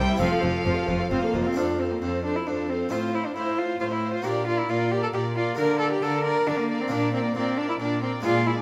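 A lively, brilliant baroque-style concerto movement in F major, this excerpt moves at 135 BPM in a straight 3/4, with a rich, gut-toned solo cello carrying the melody up front while a very quiet violin section also plays a melody high above with a smooth top. A close second violin section plays the second line, a dark, distant viola section and a full-bodied harpsichord with two sets of strings fill in the accompaniment from the background, and a reedy cello section holds the bass throughout. A nasal double bass section plays the bass from the start only until 1.4 s, all in a moderate recital-hall reverb as the harmony moves from F through Bb to G minor.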